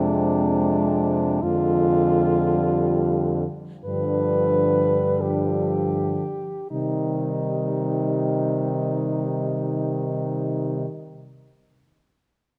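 The recording has a dark, warm production, with four French horns heard in the moderate reverb of a scoring stage. Cut from a longer classical piece in C minor, this lyrical passage feels yearning and melancholic, unfolding in a rubato 4/4 at 37-57 BPM and slowing down through its first 6.7 seconds. Up front, a clear horn with light vibrato and a soft attack carries the melody, while a second horn with a smooth top and light vibrato plays a line behind it. Two lower horns, distant and roomy in tone, supply the accompaniment and the bass, and the bass horn sits up front in the mix. The harmony moves from Fm through Ddim/F to G7, then settles on Cm at 6.7 seconds as a new section begins, with all four horns sounding together from the start until about 10.9 seconds.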